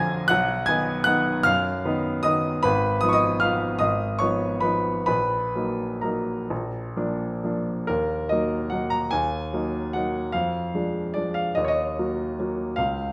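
Nostalgic and bittersweet, this brief fragment of a classical piano waltz moves in a flexible, rubato three-beat lilt. A solo grand piano plays throughout, its polished, present tone sitting up front with short sustain and spanning from Ab1 to Bb6 within a moderate recital-hall reverb. Around 7.9 seconds the music turns to a new passage that carries the wistful harmony onward until the fragment breaks off at 13.1 seconds.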